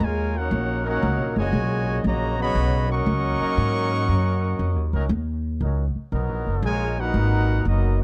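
Closely miked and nearly dry, this brief swinging big band passage puts a mellow trumpet section up front on the melody, with a light vibrato and smooth top, while a warm trombone section carries a second line beneath it. A woody, thumpy pizzicato upright bass sits prominently in the mix, and from 0.8 to 6.9 seconds a nasal, straight-muted trombone section adds bright sustained chords over a single minor-seventh harmony. The mood is brassy and swinging, in classic jazz style.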